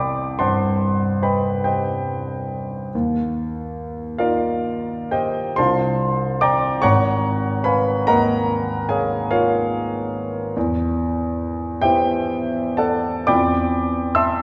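A grand piano, tuned to A4 = 444 Hz, carries this serene, hazy impressionist solo from 0.0 to 14.4 seconds, its long-sustaining tone sounding warm and present as it ranges from Ab1 to E6 in a loose, rubato 9/8. Lush, colored harmonies such as Cm6, C9sus4, Abm6 and Emadd9 drift past one another, and the passage arrives at F69/E at 13.3 seconds. A wet scoring-stage reverb with a 1.4-second decay places the listener further back in the room, and the music is cut from a longer piece.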